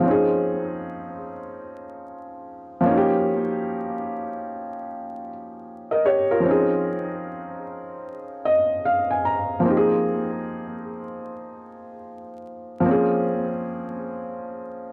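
A felt-muted upright piano opens this short hip hop excerpt on its own, sitting up front with a soft, intimate, vintage tone that sets a mellow, cosy mood. Its playing swings lazily in four, moving through a relaxed progression of Dbmaj7, Eb7, Ab6 and Bbm7 chords across a range from F3 to Bb5. Between 8.1 and 9.7 seconds the piano slips in a brief fill before settling back into the changes. A low-pass filter, cassette tape colouring and an analog delay shade the piano, lending it a hazy, rounded smoothness. The whole clip carries the feel of a home cassette recording in a booth with a short, wet ambience, with vinyl crackle adding a dusty texture until the piece is cut off at 14.9 seconds.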